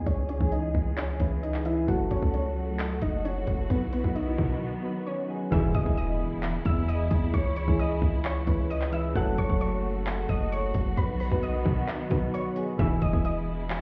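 A glassy, crystalline wavetable pluck carries the melody over soft, round electric-piano-like keys, lush bowed symphonic strings and a heavy, distorted 808-style bass, joined at once by an up-front trap kit with a hard-clipped kick, crisp hats and handclaps, in a dreamy, triumphant hip hop and trap groove at 132 BPM in half-time, E major. A very quiet electronic swell builds from 3.5 seconds, running through a short break from 4.6 seconds, and an impact lands at 5.5 seconds, where an edgy, nasal sync-sweep polysynth adds brief background stabs over the cycling C#m, F#m, B and E chords. The whole excerpt sounds muffled, as if heard through a wall, with a hint of stone room reverb.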